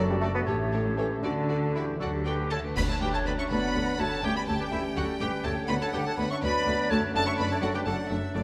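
A playful, whimsical cinematic film cue in 6/8 with a magical, mischievous mood, where a rich, vibrato-laden chamber violin section carries the melody over second lines from an airy flute, a distant clarinet, a smooth cor anglais and a background violin section, while a roomy bassoon and a very quiet viola section accompany, a dark French horn section holds sustained chords, a ringing harp plays arpeggios, cellos and double basses carry the bass, and dry clash cymbals with concert bass drum mark a band accent at 2.8 s within a moderate scoring-stage reverb.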